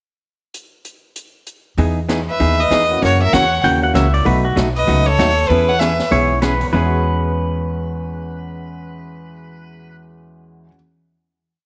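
Western swing with a country lilt, this short, playful piece opens on a pickup bar of swinging big-band drums, sticks keeping time on the hi-hat with a backbeat on a high-tuned snare in an airy, polished hall sound. At 1.8 seconds the woody, thumpy upright bass sits up front with a two-beat root-and-fifth pattern and walk-ups, joined by a dark, hollow-body jazz guitar picking a four-to-the-bar rhythm. A clear, focused fiddle carries the down-home melody in song-like motifs with light vibrato, shadowed in the background by a reedy, nasal second fiddle playing a harmony line mostly in thirds. A mellow upright piano adds syncopated comping in close voicings, its action noise audible, while a bright, twangy pedal steel enters at 3.6 seconds with volume swells and answering blues licks. The fiddles drop out at 6.1 seconds and the drums soon after, leaving steel, guitar, bass and piano to hold the final chord under light reverb.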